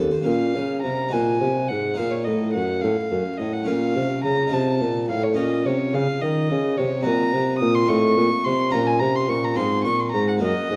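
Grave and introspective, this baroque-style sonata movement in 6/8 with rubato is a short passage cut from a longer piece. A plucked, airy harpsichord with a full, French-style sound and a mellow bassoon with classical-style vibrato form the continuo from the first moment, and a single bowed violin with a reedy, gut-string period tone enters at 0.3 s to carry the melody up high. The recital hall reverb is wet, and the dark production is overlaid with vinyl crackle.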